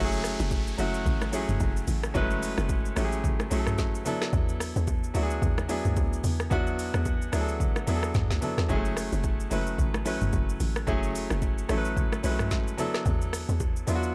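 A bright, polished concert grand piano sits up front in this deep, hypnotic amapiano excerpt, voicing short-sustained F#m9 and E9sus4 chords in F# minor at 110 BPM with a swung 16th-note feel. A hollow, bouncy log drum bass with a fast attack and noisy FM edge anchors the low end, while an electronic afro-pop kit with a deep kick, woody snare, metallic hats, rim clicks, shaker and toms drives the groove, and very quiet, close bongos and congas ring in underneath. An electronic downlifter sits in the background until 4.3 seconds, and the whole mix has a dry, gritty character.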